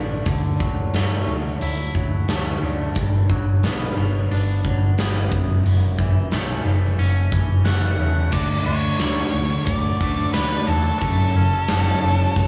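A small studio room with light reverb frames this restless, cathartic quiet-loud alternative rock excerpt at 89 BPM in straight 4/4. A clean, twangy, fingered electric guitar plays arpeggios through phaser, slapback and tape echo over a round, punchy hollow-body bass and an up-front, mid-forward acoustic kit with a medium-tuned snare and rolled-off top, as the chords move from Dadd9 through Gmaj7 to F#m7. At 7.6 seconds a dark octave-fuzz lead guitar takes the melody, and at 8.3 seconds an overdriven semi-hollow guitar adds a picked riff as the harmony shifts to D and F#m.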